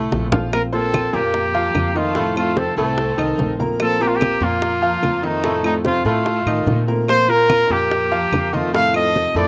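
A punchy trumpet with vibrato carries the melody up front from 0.5 s in this relaxed, warm Cuban son and guajira excerpt at 146 BPM in straight 4/4, moving between F7 and Bbsus2. Beneath it, a bright, worn concert grand rolls out arpeggios with slapback echo, a dark, thumpy pizzicato upright bass anchors the low end, and a thumb-plucked flamenco guitar plays accompaniment in the background, also touched by slapback echo. Round, soft-handed bongos with slapback echo, thin-skinned congas and woody claves sit back in the mix alongside a clear, smooth bowed violin section playing a second line with slapback echo, all in a dry, open-air sound.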